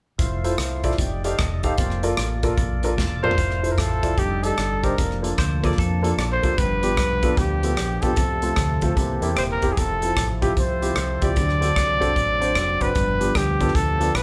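A breathy, mellow trumpet carries the melody from 3.2 s, up front with scooped notes and a jazz-style delivery, in this hopeful, jubilant uptempo gospel piece in F major at 150 BPM with a swung 4/4 feel. Beneath it, a tonewheel organ holds sustained chords through a fast rotary speaker, and a concert grand piano with audible action noise and long sustain fills in the accompaniment. A round, punchy fingered electric bass anchors the low end, while an airy, polished drum kit with a tight kick plays a fill at 3.0 s into the second section; a bright, twangy clean electric guitar adds a brief second line at 5.4 s, and the whole band sounds as if it's playing live together in a large studio room with moderate reverb.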